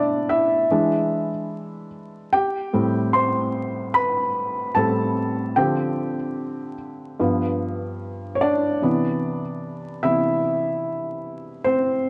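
A relaxed hip hop pulse at 74 BPM in 4/4, swung on the sixteenths, carries this cosy, dreamy fragment in C major, cut from a longer piece. A felt-muted upright piano plays alone throughout its 12.1 seconds, sitting up front with a soft, mellow, intimate tone and short sustain, colored by cassette tape character and a low-pass filter as it moves through E7, Am9, Dm7 and G7 before resting on Cmaj9. A moderate plate reverb and a bed of vinyl crackle lend the room a hazy glow.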